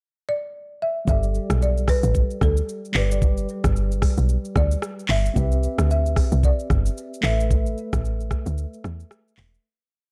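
Afrobeats with a sunny, romantic mood, where a woody, close-miked folk marimba with tape echo opens alone in a short pickup before a bouncy, syncopated log drum bass, a knocking electronic afro-pop kit of soft kick, smooth hats, syncopated rim clicks, shaker and handclaps, and a mellow tine electric piano holding spread chords with grace notes join at 1.1 seconds for a brief chorus in a dark production that fades out from 7.5 seconds into a break at 8.6 seconds.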